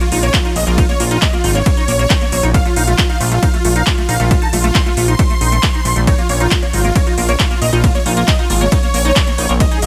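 A steady, straight 4/4 pulse at 136 BPM drives this soaring, emotional uplifting trance clip in Bb minor, with a punchy, overdriven electronic kick sitting up front beside a big-room dance kit of crisp hats, handclaps and ride cymbal, while a fat, detuned analog bass pumps beneath on sidechain, holding to its low Ab1 to Bb1 range. Over this, a huge, dense compressed supersaw carries the melody with vibrato, delay and sidechain pumping, and a squelchy, resonant liquid acid bass spins arpeggios through lush chorus and delay. A barely audible impact marks the opening 0.8 seconds, the harmony moves from Bbm to F/Bb at 2.5 seconds and back at 6.1 seconds, and a digital ambience surrounds the mix in this portion cut from a longer piece.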